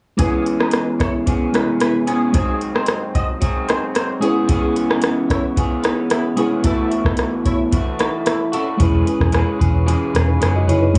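A soft vintage rhythm box opens at 0.2 seconds, its deep kick, metallic hats and rim click sitting up front with a gritty, sampled edge and a small-room echo, as this sunny, laid-back bedroom pop and indie pop excerpt settles into a straight 112 BPM in E major. Alongside it, an electric guitar through a small old amp plays a picked, slightly broken-up, lo-fi accompaniment part with a warbly pitch drift and subtle chorus, while a reedy, worn electric piano, slightly out of tune and heard as if through built-in speakers, fills out the accompaniment. Above them a bright, twangy clean electric guitar carries a second line soaked in ensemble chorus, analog delay and plate reverb until about 8.7 seconds. The harmony moves through E6, G#7, C#m7 and B7sus4 before landing back on E6 at 8.8 seconds, where a dark, round, foam-muted picked bass enters for the closing section. The whole piece sits in a damp small-room ambience that lends it a cozy, homemade feel.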